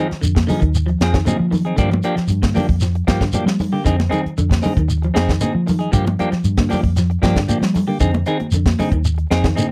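An up-front, dry funk drum kit with a high-tuned snare and tight kick drives this defiant, hypnotic afrobeat cut alongside a dark, round, foam-muted electric bass, ringing hard-hand congas and a grainy shekere, while one clean hollow-body guitar picks arpeggios in the background and another fingers dark stabs through a slapback echo over an Fm7 to Gm7 vamp, all captured in a close, 1970s-style studio sound.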